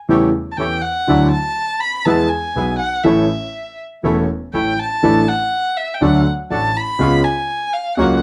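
Tango in 4/4 with a rubato feel, this sultry, dramatic excerpt is cut from a longer piece. A warm concert grand piano carries the accompaniment from 0.1 seconds, sitting up front with a deep bass, an open tone and long sustain. A dark, reedy bandoneon adds stabs from the same moment, set lower in the mix. At 0.5 seconds a rich, bowed violin enters as a single player, taking the solo and a second line high above, expressive with vibrato and portamento and placed up front despite a distant quality. The harmony moves from A7/E through Dadd9, E, A and Asus4 to D and C#7, all within a dark, warm production bathed in a wet club reverb.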